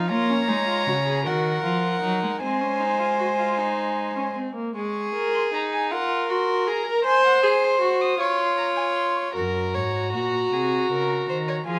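A dark, nasal first violin carries the high melody over a rich second violin, a reedy viola and a gut-strung cello from the opening of this solemn, contemplative baroque-style fugue for string quartet in Db major, moving at a slow 52 BPM in a straight 6/8 through a moderate recital-hall reverb, with the cello falling away at 4.3 seconds and returning at 9.4 seconds as the opening material comes back.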